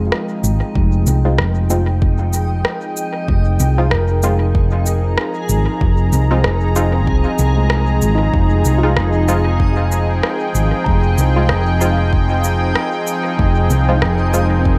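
A light reverb and digital ambience give this hazy, spacious ambient dub piece an airy, roomy sheen. It moves at 95 BPM in 4/4 with a swung sixteenth-note feel, resting on a single Fm7 chord in F minor throughout. A round, dark hollow-body electric bass sits up front and anchors the low end. A deep, layered electronic kick joins at 0.8 seconds, while an electronic rim click and cabasa, tape-tinged and re-recorded in a large room, carry dub echo from the start. A smooth, detuned sawtooth analog pad with chorus holds sustained chords, and a felt-muted upright piano plays soft, intimate arpeggios through tape echo, its action noise audible in the background. From 1.2 seconds, filtered dub chord stabs with a quick pluck, chorus and dub echo sit deep in the mix, alongside a reversed, granular swelling texture that drifts dreamily in its own reverb, all within this cut from a longer piece.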